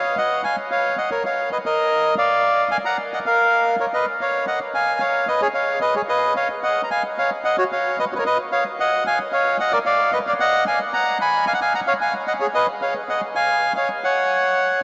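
Melancholic and dramatic, this brief tango passage features a lone bandoneon playing freely in rubato at around 112 BPM in 4/4. The instrument sits up front, its reedy, dark and smooth voice ranging from F#4 up to B5 across the full 14.8 seconds. Harmony drifts through colored chords such as C#add9, A#m and G#m13 before settling on an open F#5 at 12.9 seconds. A huge, wet ambient reverb places the playing in a vast, echoing space with an 8.3-second decay, and the top end is rolled off above 7.7 kHz, giving the sound a veiled, cavernous quality. Taken from a longer piece, the fragment feels like a lonely, brooding reflection suspended in the hall.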